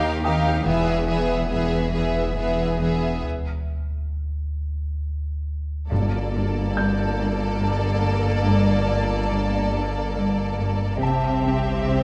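In a slow 3/4 at 70 BPM, this mysterious, eerie suspense film-score excerpt moves through shadowy chords before settling into G minor at 5.9 s, where soft-mallet timpani on G2 sound briefly in the background until 7.2 s, following a break between 3.2 s and 5.9 s. A lush bowed string ensemble carries it throughout: a warm violin section holds the melody, a clear, close violin section adds a second line, and a distant viola section accompanies, while two rich cello sections, one playing a riff and one playing a bass line, sit in the background with a focused double bass section. Beneath them a deep, clean sine sub bass drones, and a felt-muted upright piano adds a mellow, dark, intimate texture high above, all within a moderate scoring-stage reverb.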